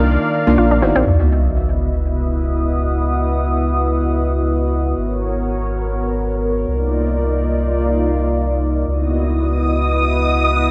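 A round, deep sub bass sits up front through this moody, hypnotic deep house passage, cut from a longer piece, beneath a smooth, detuned analog pad with subtle chorus and a lo-fi, nostalgic tape-like pad that warbles through chorus, phaser and its own reverb. The opening second carries a nasal, wave-folded analog pluck playing arpeggios in the background and a dark, soft chord stab with a filter sweep, both fed through tape echo, before an electronic sub drop lands as an impact at 1.1 seconds. A silky string machine with ensemble chorus enters up front at 9.3 seconds, all within light digital ambience over shifting minor eleventh chords, with some lossy compression artefacts.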